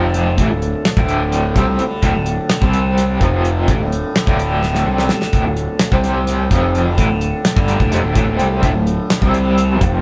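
Recorded as a band playing live in one room with moderate studio reverb, this dark, hypnotic psychedelic rock excerpt in 7/8 and D minor moves at 254 BPM in eighths, with a bright, double-tracked raw garage guitar riff carrying overdrive and tremolo up front beside a dry, fat-snared damped 70s drum kit that plays a fill at 4.6 seconds, while a round, punchy fuzz picked electric bass holds the low end, a reedy vintage combo organ sustains chords in the background, and a buzzing, shimmering tanpura drone hums beneath, all cycling through D minor, C5 and F5.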